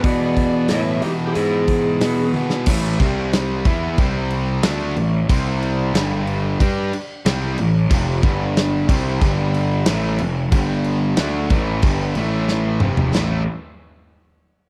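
Blues rock power trio with a southern rock edge, this brooding, heavy excerpt in A minor moves at 92 BPM in a straight 4/4, opening with a lo-fi overdriven lead guitar melody over a brighter, background second lead that both stop at 2.3 seconds, as a drum fill begins. A bright, double-tracked stack guitar drives the riff with spring reverb over a growly fuzz bass and a big, punchy acoustic kit with a medium-tuned snare, rolled-off top and crashing china and crash cymbals, all up front. The riff works through power chords on A, C, G and F with a passing Gsus2, in a dry, close 1970s-style studio sound with a small room reverb, before a second drum fill at 12.5 seconds.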